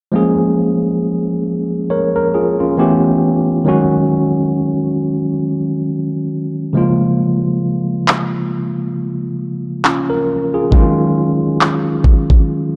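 Contemporary R&B in Bb minor at a slow 68 BPM with a swung sixteenth feel, sensual and moody, in a short cut from a longer piece. A worn, slightly out-of-tune tine electric piano, lightly overdriven and heard through built-in speakers, sits up front playing chords that move through Bbm7, A9, Ab7sus4 and back to Bbm7 before landing on Ebm11. At 8.1 seconds an electronic R&B kit joins with handclaps and a knocking kick re-recorded in a small room, all within a dark production touched by light reverb and digital ambience.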